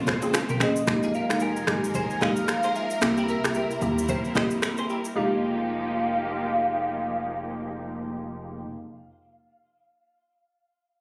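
A phone recording in a club's light reverb catches a mellow, hypnotic afrobeats excerpt in F minor at 112 BPM with a swung 16th feel, where a velvety sawtooth synth lead with chorus and delay sings a melody over smooth bowed strings, a hollow, bouncy square-wave pluck, a bright, twangy clean electric guitar riff, a deep sine sub bass entering at 0.5 seconds, a brief burst of hard-handed bongos and congas, and an up-front electronic drum kit of deep kick, snaps, rim clicks, shaker and toms that drops out at 5.2 seconds as the chords move from Bbm9 through Fm11 and C7 back to Fm11.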